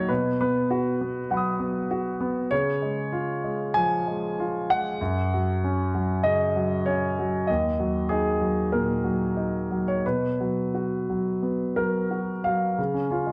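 A warm, polished concert grand piano plays solo and up front in this tender, hopeful excerpt of neoclassical minimalist piano, moving with rubato in 4/4 at around 84-100 BPM through Cb, Db, Gb5, Ebm and Cb5 chords, its present tone and deep bass spanning Eb2 to Eb6 within a moderate scoring-stage reverb, tuned to A4 = 444 Hz.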